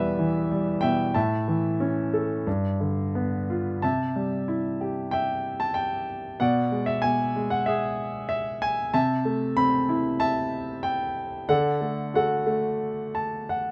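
A lyrical classical solo piano piece, cut from a longer work, unfolds at a relaxed 93 BPM in 4/4 with a flexible, rubato feel and a warm, unhurried mood. A single grand piano carries everything from 0.0 to 13.7 seconds, its tone clear, smooth and slightly vintage, sitting up front and ranging from E2 to B5. The harmony opens in G lydian through Em, A and G7, then shifts to C lydian at 3.8 seconds, moving through C, E7/B, Amadd9/C and arriving on D. A brief piano fill closes the passage at 12.8 seconds. Close, detailed microphones and light reverb give the instrument an intimate, present sound.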